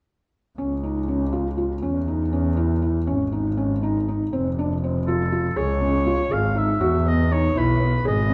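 A roomy, classical-style oboe with light vibrato enters at 5.1 s to sing a solo melody over a bowed, focused double bass with bright vibrato and a felt-muted upright piano whose mellow, intimate arpeggios carry audible action noise, giving this shimmering, playful contemporary chamber piece in 5/8 at 241 BPM (eighths), bathed in moderate concert hall reverb and cut from a longer work.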